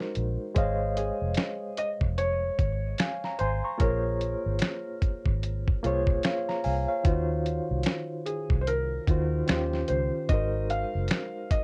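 A soft, felt-muted upright piano melody floats over a reedy electric piano with fast tremolo and a gritty, compressed sampler-style kit of thumpy kick, snare, hi-hat and finger snaps, joined at 0.2 s by a dark, round muted electric bass, in a nostalgic, hazy lo-fi hip hop fragment with a swung feel, lush ninth chords, light reverb and a worn, warbling cassette-tape drift over the whole mix.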